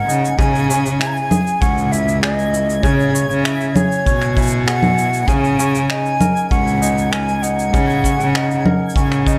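Autumnal and delicate, this folktronica fragment sets a breathy, hollow concert flute melody with vibrato and tape echo over ringing, fingerpicked kora arpeggios that also carry tape echo. A rich, bowed cello holds the bass up front beside electronic cabasa, finger snaps and congas with a tape-warm, produced sound, while a punchy, gritty kick drum enters at 0.4 seconds. Behind them a twinkling granular texture sparkles in the background with its own reverb, and the whole mix sits in light reverb and small-room ambience.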